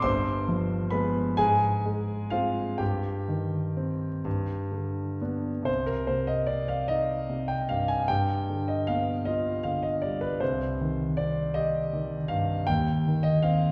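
An intimate concert grand piano, its action noise audible and its deep bass reaching down to G1, plays a wistful, mournful romantic nocturne alone in C minor, drifting in rubato 12/8 at a slow 40-54 BPM counted in dotted quarters, moving from a G7b9 opening through Ab and G to a new section on C minor at 5.7 s, set in a wet scoring-stage reverb with a 1.8-second decay and heard from further back in the room, in this brief passage cut from a longer classical piece.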